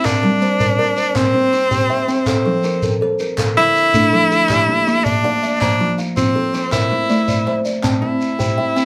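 Hypnotic and rippling, this short excerpt cut from a longer piece draws on southern African traditional music, built around an mbira-style interlocking cycle in 12/8 at 108 BPM in dotted quarters, with a straight feel in C mixolydian. Two kalimbas spin arpeggios throughout, one with a soft, short fingertip pluck and a hollow-box woodiness, the other thumb-plucked and ringing, reaching up to C6 with an airy shimmer. Over them a bright tenor saxophone carries the melody in a narrow band from C4 to E4, punchy and forceful with vibrato and a jazz-style solo voice sitting up front. A grainy shekere and a group handclap add percussion from 0.1 seconds, both distant as if in a large room, the claps sitting in the background and stopping at 8.0 seconds. The chords cycle through Gm, C, F, Dm, Bb, F, Am and C, all inside a wet studio ambience.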